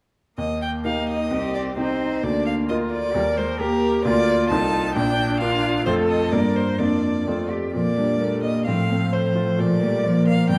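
A clear, focused violin with vibrato carries the melody up front in this cheerful, lively classical-period movement for piano quartet at a quick 130 BPM in 2/4 with a rubato feel, joined by a bright baby grand piano with long sustain and a distant bowed viola in accompaniment, while a rich, smooth cello enters at 0.9 s with a second line, the music shifting from Eb major to Bb major at 4.1 s within the moderate reverb of a recital hall and a dark overall production.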